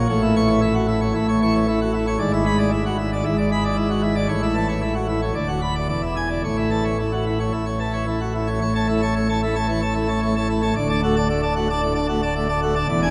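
Jubilant and brilliant, this classical organ toccata in A major moves at 113 BPM in a straight 4/4, with a solo pipe organ on full plenum whose mixtures and baroque voicing give a bright, chiffy attack from a deep D1 up to C#6, placed up front. The harmony circles between A and E7, touching Bm/D before returning home, and a new section from 8.6 seconds settles onto D at 10.8 seconds. A long, wet cathedral reverb with a 4.4-second decay surrounds the organ in this brief cut from a longer piece.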